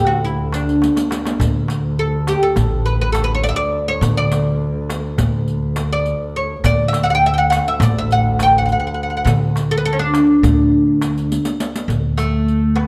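Close, detailed microphones and a moderate recital-hall reverb frame this passionate, stately excerpt of Turkish makam ensemble music in D makam rast, moving in 9/8 at 206 BPM counted in eighths with a straight feel. A deep, woody, fretless oud, plectrum-plucked on double strings, carries the melody up front. Beneath it sit a pizzicato upright bass with steel strings and a bowed double bass holding a D drone with vibrato, portamento and a smooth top, while a clay-shelled darbuka with natural skin and a riq with dark, saturated jingles are played with soft hands, and drum fills arrive at 0.8 and 11.3 seconds.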